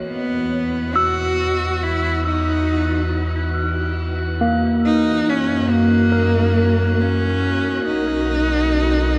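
A rich, expressive cello carries the melody up front in this peaceful ambient excerpt, a single bowed player with a soft attack, vibrato and portamento, trailed by a diffuse ambient delay. Alongside it, a worn, slightly out-of-tune tine electric piano plays arpeggios, lightly overdriven and colored by a phaser and its own delay. A round, sine-like sub bass fades in over the full 9.2 seconds, deep and mellow, while a detuned, sawtooth string-like drone with a noise layer and vibrato hovers tensely in the background under its own reverb. High above, a glassy, ethereal glass harmonica holds a single pure note with a slow attack and audible beating. At 70 BPM in 3/4, the harmony moves from Esus2 to F#7 at 5.3 seconds and Bmaj7 at 7.8 seconds, all inside a dreamy mix soaked in a huge, long reverb.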